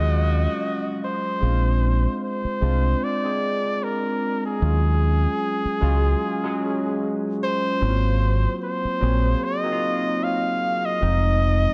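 A lazy 4/4 groove with a gentle swing on the sixteenths sets up this sultry, smooth slice of neo-soul R&B, cut from a longer piece. A deep, round dub bass played with the fingers sits up front, dark and punchy, anchoring the harmony as it moves from Ebm11 through Bb9 and Ab13 before landing on Fm7 at 11.0 seconds. A bright, barky tine electric piano carries the accompaniment, lightly overdriven through a combo amp and shimmering with analog chorus. Over it, a warm flugelhorn takes the solo melody with vibrato and a smooth top, while a distant, roomy saxophone section adds clear stabs in the background only during the opening second. A moderate plate reverb soaks the mix, lending the whole track a dreamy, late-night haze.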